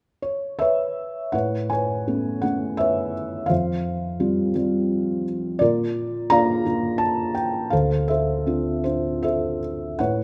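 A felt-muted upright piano enters alone at 0.2 s, its tone soft, dark and intimate, placed up front in a moderate recital-hall reverb. This is calm, tender classical solo piano in 6/8, moving slowly at around 52-58 beats per minute counted in dotted quarters, with a freely breathing rubato feel. The harmony drifts through gentle, open-sounding colours, from a Bsus24 opening into Aadd9 at 1.3 s, then Fsus2, Bb, and finally Dm7 at 7.7 s. The instrument's range stretches from D2 up to Bb5, and its thick felt gives the notes a mellow, vintage character. The brief passage, cut from a longer piece, rests on that Dm7 colour as it ends at 10.2 s.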